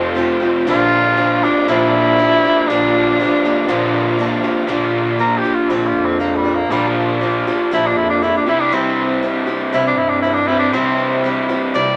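A straight 4/4 rock groove at 119 BPM carries this jangly, nostalgic excerpt, where a raw, overdriven, double-tracked garage guitar riff sits up front beside a bright picked acoustic archtop with audible finger squeaks, a distant, soft-attacked bass clarinet holds the low end, a reedy tonewheel organ with key click and rotary speaker sustains very quiet chords until 4.7 s, and a clear, vintage tenor saxophone with vibrato leads the melody before taking a solo from 4.7 s, all over Fadd9, Bb6 and C chords in a moderate club reverb.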